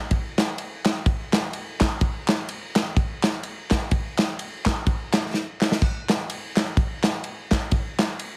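A lightly swung gospel groove at 126 BPM in 4/4 carries this short cut from a longer piece, with a solemn yet fervent mood. An up-front acoustic drum kit, heard in a small room with a tight kick, medium-tuned snare, ride and splash cymbals, plays from 0.1 to 8.3 seconds and breaks into a fill at 5.3 seconds, while hollow, distant group handclaps sit back in a large room. Light reverb and a heavily compressed, radio-like sound give the whole a broadcast character.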